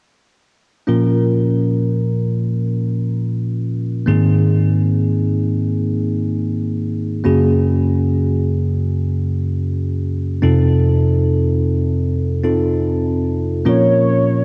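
Steeped in a lush hall reverb and the character of a home cassette recording, this emotional, heartbroken pop fragment in Bb minor moves at 75 BPM as a bright, bell-like tine electric piano with phaser carries the chords Bbm, Abadd9, Gbadd9 and F7 from 0.9 s, before a velvety, warbling synth lead with chorus enters on a single sustained Db5 at 13.7 s just as the harmony returns to Bbm.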